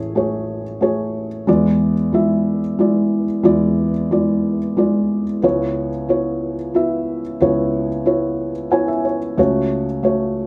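A felt-muted upright piano plays alone in this heartfelt, hopeful folk excerpt, its dark, intimate tone sitting up front with the thick felt and audible action noise clearly heard across a range from A1 to G#5. Moving in an unhurried 3/4 at 91 BPM, the harmony passes from Amaj7 to E7, then shifts at 5.4 seconds to C#m7 before settling on A6/C#. A moderate reverb from a large studio adds a sense of space around the piano's soft, natural sound.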